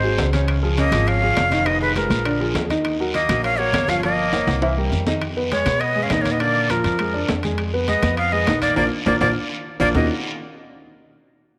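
A breathy, bright jazz flute leads this driving, sultry Afro-Cuban jazz excerpt at 203 BPM in Eb minor, its crisp, chiffy attack and vibrato sitting up front over a dark, mellow grand piano and a woody, thumpy pizzicato upright bass on gut strings. A tenor saxophone with scooped notes carries a second line in the background, while soft-handed congas, a ringing metal-shelled timbale and a raspy, band-limited guiro fill out the percussion. Drum fills arrive at 4.3 and 9.1 seconds, and a band accent lands at 8.8 seconds, all within a moderate echo-chamber reverb.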